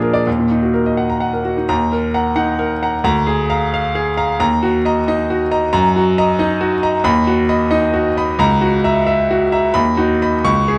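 Set in 6/8 with supple rubato, this classical virtuoso piano study moves at about 81-92 BPM, counted in dotted quarters, and carries a heroic, brilliant spirit. A solo baby grand piano plays throughout this short cut from a longer piece, spanning C#2 to C#6. Its tone is bright, intimate and natural, placed up front, with the action noise clearly audible. The harmony opens in Eb minor, passing through Bb7/D, back to Ebm and on to Ebm/Gb. At 7.0 s it turns to B major, moving through F#7/C# and settling on B/D# before the fragment breaks off at 10.8 s. A moderate recital hall reverb gives the instrument some air, the production leans dark and warm, and the tuning sits at A4 = 442 Hz.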